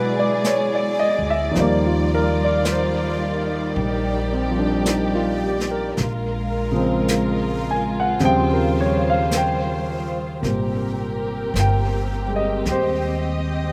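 An up-front, natural-sounding grand piano accompanies this tender, intimate jazz ballad at a slow 54 BPM swing, its slapback echo giving the chords a faint doubling as the harmony moves through lush ninth and thirteenth colors in Eb major before shifting to Ab major at 10.4 seconds. Bowed symphonic strings hold smooth, vibrato-rich sustained chords up close, while a woody, growly pizzicato upright bass anchors the low end. A brushed drum kit joins at 0.4 seconds with soft snare and hi-hat touches, also carrying slapback echo, all captured dry and roomless in this fragment of a longer piece.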